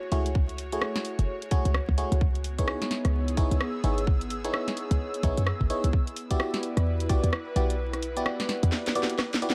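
A skippy two-step garage groove at 129 BPM in 4/4 swings its sixteenths at 61%, with a tight electronic kick pushed up front beside a layered garage kit of cracking snare, rim click and warm hats. Beneath them a short, punchy 808-style bass built on a sine with a noise layer hits with a fast attack and decays quickly, playing through to 8.7 seconds. A glassy FM electric piano supplies bell-like stabs, coloured by chorus, phaser, delay, a low-pass filter and cassette-tape character, moving through F#m9, C#m9 and Em9. An airy, breathy pad with a slow attack and long release warbles softly behind it all, its detuned vintage tone brightened by chorus and pulsed by sidechain pumping. The production is dark and soulful with light digital reverb and vinyl crackle, and in this excerpt the kick drops away at 7.8 seconds before a drum fill carries the last moments.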